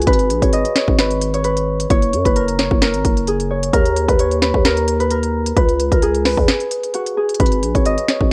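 Brooding and menacing, this short trap cut from a longer hip hop piece moves with a heavy half-time feel. A thumb-plucked Celtic harp carries the melody, its acoustic, ringing tone softened by a low-pass filter and placed up front. Beneath it, a growling 808-style bass with a buzzy, sine-based body, fast attack and decaying notes sits close alongside an electronic trap kit built from a hard-clipped kick, sharp snare and crisp hats. The harmony cycles from G#m through F#add9, D#5 and C#5 before returning to G#m, with a brief break at 6.5 seconds. The whole sound is dry and gritty, with little room ambience.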